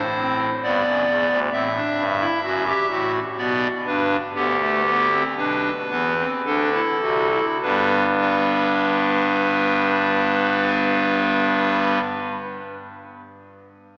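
In a 3/4 with a straight feel, moving between 50 and 68 BPM and slowing down from 0.2 to 7.6 seconds, this lively, joyful baroque-style fugue in G major for pipe organ has three voices spanning D1 up to E5. The organ plays alone on a hollow clarinet reed stop with a romantic voicing, set up front, while the chords move from G through D and G/B to D7 before landing back on G at 7.6 seconds as a new section begins. A wet cathedral reverb with a long 4.3-second tail surrounds it, and the worn, warbling cassette sound, with drifting pitch and a small-speaker tone, colours this fragment of a longer piece.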